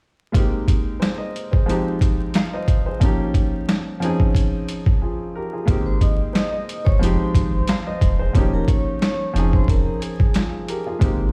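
Boom-bap hip-hop at 90 BPM with a moody, reflective swing, where a woody upright piano accompanies gritty, overdriven sampler-style drums with a thumpy kick, and after a brief break a deep, round dub sub bass enters at 5.7 seconds, followed at 5.9 seconds by a metallic, ringing vibraphone melody with slow motor vibrato and tape echo, the whole mix sitting in stone-room reverb and vinyl crackle as if played on a big sound system in a bare room.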